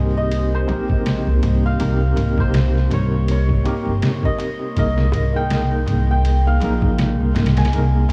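A lightly swung, compressed sampler-style drum kit with a thumpy, pitched-down kick, medium-tuned snare and ride sits up front beside a growly, woody pizzicato upright bass, while a very quiet, dry clay darbuka adds soft hand strokes in this hypnotic, melancholic trip hop fragment. A bright, shimmering santur carries the melody through 12-bit sampler grit and tape echo over a worn, slightly out-of-tune tine electric piano with overdrive and tremolo, all moving from Cm7 to Ebsus4 at 4.8 seconds. A deep, detuned ambient pad with chorus hangs in the background, an airy, breathy wind-like noise texture drifts in at 1.4 seconds, and the whole mix wears warbling cassette tape, pitch drift, vinyl crackle and small room ambience.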